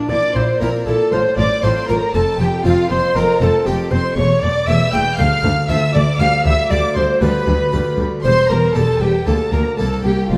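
Lively and festive, this 10.4-second excerpt from a baroque-style concerto movement in F major moves at 118 BPM in a straight 4/4, with a close-miked, airy, hollow tenor recorder carrying the melody with tongued chiff and straight tone, a distant high violin section also playing the melody with expressive vibrato, a dark chamber violin section singing a smooth second line in the background, a full French-style harpsichord and a very quiet, rich viola section filling in accompaniment, and a cello section with portamento beside a close, even double bass section anchoring the bass, all set in a wet recital hall reverb with a dark, warm production.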